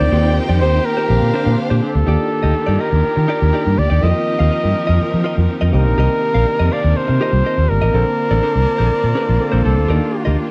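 A clear flugelhorn with vibrato sings a scooped, up-front pop melody over a glamorous, sultry disco groove at 123 BPM, alongside a growly, amped fingered bass, a barky, lightly overdriven tine electric piano in the background, a compressed, direct-recorded clean guitar, focused bowed strings holding sustained chords, and a smooth, expressive string line with portamento that stops at 2.1 seconds as the harmony moves through Ebmaj7, F7sus4, Cm7 and Bbmaj9, captured in a dry, close 1970s-style studio sound.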